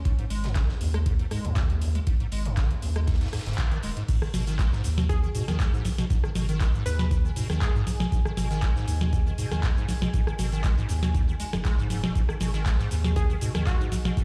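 Acid house at 119 BPM in G# minor, this driving, raw excerpt rides a lightly swung 4/4 groove, with a band accent at 3.6 seconds before the drop lands at 4.1 seconds and carries through to the end. A deep, tape-toned electronic kick sits at the front, joined by a booming analog drum machine playing dry, tonal snare, metallic hats, handclaps, rim click, cabasa and crash, while a very quiet, gritty acoustic kit adds hi-hat and a medium-tuned snare from a big room. Underneath, a squelchy, hollow square-wave acid bass runs its resonant riff with tube saturation, ensemble chorus, analog delay and sidechain pumping, alongside a thick, saturated triangle sub bass that also pumps. A glassy, crystalline wavetable pluck appears only in brief melodic fragments, most notably from 5.1 to 8.0 seconds, its detuned tone treated with chorus and analog delay. From 5.9 seconds a deep, moody sawtooth pad spreads a dark, evolving texture high above, swathed in chorus and its own reverb, while the whole mix carries a light digital ambience, as if played on a big sound system in a bare room.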